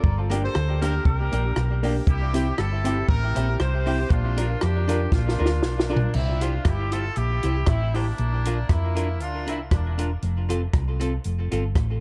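An up-front compact cocktail drum kit with a punchy kick, high-tuned snare and dark cymbals drives this upbeat, bouncy ska excerpt alongside a round, amped hollow-body electric bass, a clean, picked archtop guitar with tape echo, and a worn, woody, slightly detuned upright piano whose tape-echoed stabs end at 6.1 seconds after a drum fill, while a distant, roomy horn section with light vibrato and tape echo carries the melody in light studio reverb.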